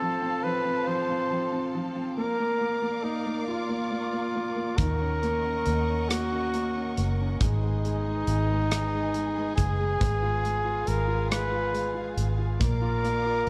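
A worn cassette-tape sound with warbly pitch drift colours this cut from a longer piece, all of it set in a moderate concert hall reverb. It is a melancholic, dramatic pop ballad in 6/8 at a slow 46 BPM counted in dotted quarters, with the harmony moving from F and Bb through Ebm7 and Abm to Fdim/Ab before returning to Bb. Up front, a close-miked flugelhorn carries the melody in a jazz-style solo with scooped notes, over a clear concert grand piano with deep, smooth bass and a vintage character. Behind them, a distant studio string section holds lush bowed chords with vibrato and expressive portamento. At 4.8 seconds a dark, round, foam-muted fingered electric bass enters up front, together with an acoustic drum kit in a small room playing hi-hat, rim clicks and a tight kick.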